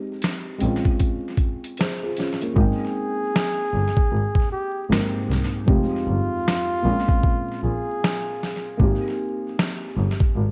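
Lo-fi hip hop with a nostalgic, dreamy mood and a lazy swing, cut from a longer piece. A felt-muted upright piano opens at 0.0 s with soft, dark, rootless minor-ninth voicings whose short sustain and audible action noise give it an intimate, thick-felt character. A gritty, compressed, pitched-down, tape-warm boom bap kit sits up front with a thumpy kick, medium-tuned snare, hi-hats and tape echo. A bowed double bass adds a clear, intense line with vibrato. At 2.6 s the hi-hats drop out as the harmony settles onto a major ninth, and a breathy, close-miked flugelhorn takes a mellow, jazz-style solo with scooped notes and tape echo until 8.8 s. Light reverb, small room ambience, vinyl crackle and an echo-heavy mix give the track its hazy glow.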